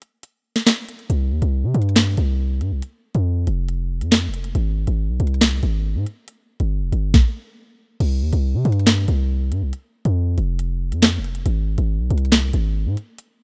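An electronic drill drum kit, up front with a knocking kick, sharp snare, crisp hats, handclaps and crash cymbal, opens this menacing, dark half-time hip hop cut at 139 BPM in C harmonic minor, playing alone until a punchy, heavy 808-style sine bass with a noise layer, fast attack and decaying tone enters at 1.1 seconds, all in a dry, rough home demo mix.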